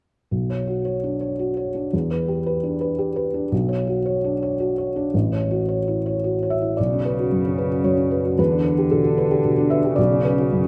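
In a rubato three-beat lilt, this fragile, longing neoclassical fragment for piano and strings opens with a soft, mellow, thick-felted upright piano placed intimately up front, cycling through Bmadd9, Em7 and A6 chords, until a single muted cello enters at 6.8 seconds with a dark, veiled, con sordino bowed second line and light vibrato, the pair framed by a moderate scoring-stage reverb.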